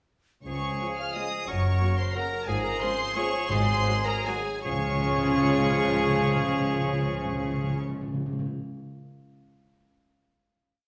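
A rich, floating violin section carries the melody of this short, elegant classical waltz in an orchestral ballroom style, its bowed tone soft at the attack and set at a distance, with a dark chamber violin section doubling the tune at the octave in the background and a very quiet dark clarinet doing the same. The feel is sweeping and rubato, with the music slowing between 2.0 and 4.7 seconds before settling onto a final chord. Beneath the tune, a clear, punchy oboe, a mellow, hollow flute and a dark bassoon play chords in the rhythm of the melody, while a woody viola section, mellow French horns and clear, vintage-toned trombones add after-beat chords and sustained harmonies from 0.8 seconds. A warm cello section sounds bass notes on the beats, doubled by a rich double bass section that anchors the low end. Timpani enter at 3.5 seconds with single strokes on bass notes from hard mallets on calf heads, articulate, close and dry, playing on to the very end. 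The whole orchestra sits in a wet recital hall reverb that gives the ensemble a spacious, concert-hall glow.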